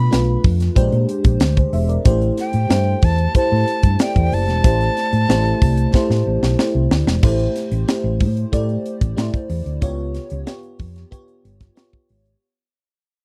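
Bittersweet and urban, this polished 1980s jazz-funk pop excerpt from a longer piece opens with a breathy, close-miked jazz flute carrying the melody through tape echo until 6.6 seconds, over a lush, dreamy FM electric piano with a soft pad layer and chorus, a dark, round hollow-body fingered bass, and a tight, dry funk kit with a high-tuned snare whose fill leads at 7.2 seconds into a fade-out, all in a dry, close 1970s-style studio sound.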